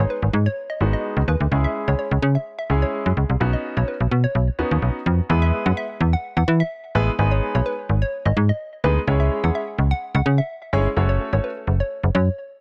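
Over a straight 4/4 pulse, this summery, carefree dance-pop excerpt rides on a snappy, up-front FM bass with a metallic attack, while a polished baby grand piano carries the chords through analog delay until 11.5 seconds and a hollow, bouncy square-wave pluck, detuned and mellowed by chorus and delay, sings the melody in a small, echo-heavy room.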